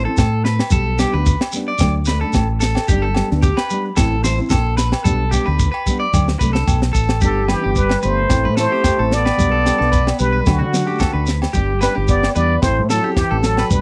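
A carefree, danceable highlife guitar band groove opens with a dark, thumb-plucked nylon-string guitar, a twangy, slightly broken-up electric guitar playing arpeggios through spring reverb and slapback echo, and a round, punchy fingered electric bass up front, joined at 0.2 seconds by a tight funk drum kit with a high-tuned snare, ringing agogo bells in the background and a grainy shekere, before a drum fill leads at 7.2 seconds into a plunger-muted trumpet melody with wah-wah and light vibrato over a buzzy, metal-muted trombone second line, all in a dry, close 1970s-style studio sound.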